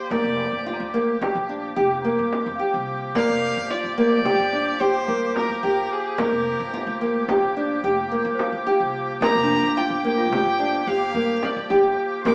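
A dark, full-bodied nylon-string guitar sits up front with fingerpicked arpeggios alongside a rich, bowed violin melody with vibrato, clear sustained woodwind chords, woody pizzicato upright bass, a small, bright frame drum and a bell-like, slightly out-of-tune celesta entering in the background at 0.7 seconds, in this restless, pensive contemporary chamber piece in 11/8 at 218 BPM (eighths) in G minor, heard from further back in a wet room with a small-speaker sound and cut from a longer work.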